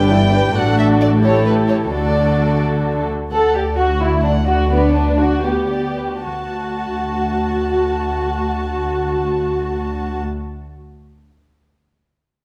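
In a lilting, straight 6/8, this quick classical-period movement for string orchestra moves with a graceful, lively step. It is cut from a longer piece and eases its pace between 2.6 and 6.2 seconds. The first violins carry the melody with a light vibrato and soft attack, their tone warm and intimate, while the second violins add a woody, darker line that sits up front with vibrato. Beneath them the violas fill in a dark, close accompaniment, the cellos supply a shadowy bass from the background, and the double basses anchor the lowest register with a warm, soft-edged sound. All five sections play throughout, bowed gently over the fingerboard, and the passage settles onto a D major chord at 6.2 seconds, all bathed in the generous reverb of a recital hall.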